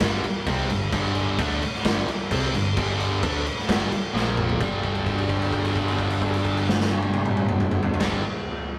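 Up front, a raw garage drum kit with a punchy kick, medium-tuned snare, crash and toms gives this driving, menacing hard rock excerpt in G minor at 130 BPM a gritty, pumping stone-room pulse, with a drum fill at 4.1 seconds leading into a held note from 4.6 seconds. A bright, double-tracked overdriven guitar riff rides a G5 to Bb5 and back progression, underpinned by a fingered electric bass with amped drive. The rough rehearsal-room recording carries tube saturation and a moderate small-room ambience.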